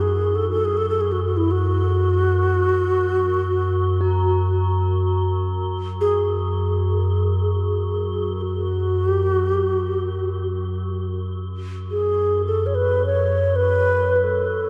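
In free time, this haunting, meditative world-music excerpt sets a hollow, airy low xiao melody with vibrato up front over a crystalline, detuned glass pad drone with chorus, while a dark, metallic bronze singing bowl rings with slow beating from 4.0 to 11.2 seconds, the whole set in a vast, echoing cathedral space with a cassette-tape character.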